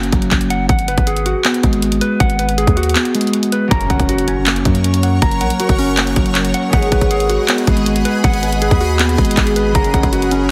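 A half-time trap beat at 159 BPM in 4/4 anchors this wistful, dreamy hip hop cut, taken from a longer piece in F# major. The electronic trap kit sits up front with a hard-clipped kick, bright hi-hats and handclaps, re-recorded in a small room, while a long, deep 808-style sine bass with a fast attack and mellow decay sustains underneath. A dark, clean electric guitar plays fingered arpeggios up front, compressed and colored by vibrato, a low-pass filter and digital delay, over chords moving between F# and G#m7. The kick drops out briefly between 3.0 and 3.7 seconds. At 3.7 seconds a very quiet electronic impact marks the next section as a fingerpicked concert harp enters in the background, ringing and filtered. At 4.4 seconds a cloudy granular pad adds slow-attack sustained chords, evolving and blurred, with its own reverb and a long release, all within a light, ambient, heavily compressed radio-style sound.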